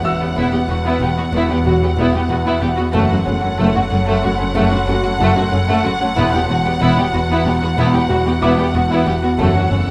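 Muted violins, veiled and rich with vibrato, carry a high melody over a second muted violin line and soft-edged violas in this eerie, ominous suspense cue, cut from a longer film score and moving at 93 BPM in 5/4 between Esus2 and F#m. A ringing harp riff, dark cellos and a warm double bass section anchor the low end, while a glassy glass harmonica, a warbling organ-like drone, a faint high violin texture, clear piano touches and mellow French horns entering at 1.7 s add colour. Hard-mallet timpani strike in at 9.4 s, with the ensemble set in a moderate recital hall reverb.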